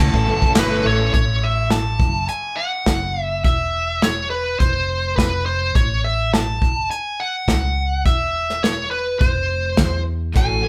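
Folk rock and heartland rock at 104 BPM in A major, hopeful and jangly, this cut from a longer piece opens with shimmering twelve-string acoustic guitar, a double-tracked overdriven electric riff, a very quiet piping tonewheel organ on slow rotary speaker and a mellow grand piano, which all drop out after about 1.1 s and return near 10.3 s, while a smooth, brilliant overdriven lead guitar carries the melody up front over a round hollow-body bass and soft brush drums with dark cymbals and a punchy kick, the band playing live in one room with light reverb.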